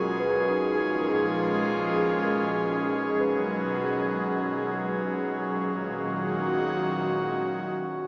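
Heard through a small speaker, this short ambient excerpt sits in a wet echo chamber with a roughly 2.0-second tail, giving it a hazy, echo-heavy glow. Its mood is serene and melancholic, moving in a gentle three-beat metre over a single sustained G#m11 chord. Up front, a breathy, detuned pad with a noise layer holds long, slowly blooming chords, softened further by chorus. Muted, felt-like synth keys trace intimate, warbling arpeggios in a dark, vintage tone, their notes decaying through chorus and tape echo until they stop at 6.0 seconds. In the background, an organ-like drone holds a calm, evolving unison note with ensemble chorus and its own reverb, while a round sine sub bass sits very quietly underneath on a single deep note.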